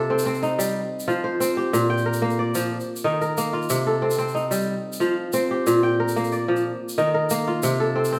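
A fingerpicked kora sits up front, its crisp, ringing arpeggios spanning Bb2 to G5 and cycling through Cm, F5, Bb and Eb5 in C dorian. This flowing, hypnotic West African traditional piece moves at 122 BPM in a straight 12/8, with a grainy, bright egg shaker entering at 0.2 seconds far back in the mix. The band plays live in one room, bathed in a large studio reverb, in a short passage cut from a longer piece.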